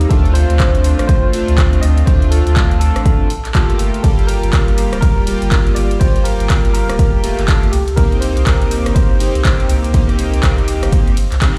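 A swung 4/4 groove at 122 BPM drives this smooth, deep house clip, cut from a longer piece in C dorian. A punchy, layered electronic kick anchors the beat from 0.1 s. An overdriven analog drum machine adds handclaps, hi-hat, ride cymbal and rim click. A round, mellow sine sub bass pumps with sidechain compression. Above it, a glossy, detuned polysynth with chorus and filter sweeps plays retro stabs roughened by vintage 12-bit sampler grit, sidechain pumping and tape echo. A barky, gritty tine electric piano carries the melody through a combo amp, with fast tremolo and tape echo, moving over Dm7, Gm9 at 3.8 s and Cm7 at 7.7 s. The mix itself is dry, yet it sounds as if played on a big sound system in a bare stone room.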